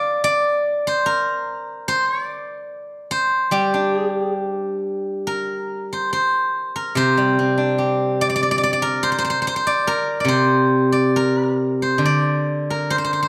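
Loosely metered in a gentle two-beat pulse, this Chinese traditional piece unfolds in free rubato, letting each phrase breathe at its own pace. It is a short cut from a longer work, given over entirely to a solo steel-string zither plucked with fingerpicks. The instrument sits up front, its bright, silvery tone ringing across a range from low C3 up to F5. An opening passage gives way to a new section at 5.3 seconds, carrying the music through to its close at 13.3 seconds. A moderate recital-hall reverb surrounds the strings with a graceful sense of space, lending the whole an elegant, contemplative calm.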